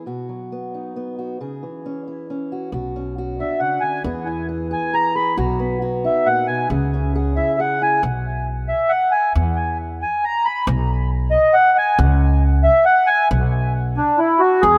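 With light reverb and small-room ambience in a rough home-demo sound, this uplifting, anthemic indie folk excerpt in 3/4 at 136 BPM builds as a dark, fingerpicked acoustic archtop guitar moves through B, C#m, Bmadd9 and E until 8.0 seconds, a growly, woody pizzicato upright bass enters at 2.7 seconds, and a reedy, close-miked accordion with slow beating and tape echo carries the melody up front from 3.4 seconds.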